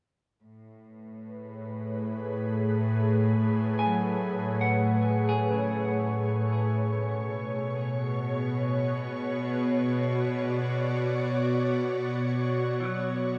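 A vast, echoing cathedral-like space wraps this serene ambient excerpt in A major and free time, where a reedy, gut-toned chamber cello section holds a low bass from 0.4 seconds in the background, an ethereal, detuned pad with chorus and shimmer reverb enters up front with sustained chords at 1.3 seconds, and a clean, hollow-bodied electric guitar adds picked arpeggios through delay and shimmer from 3.8 seconds as the harmony moves from Amaj7 to Bmadd9.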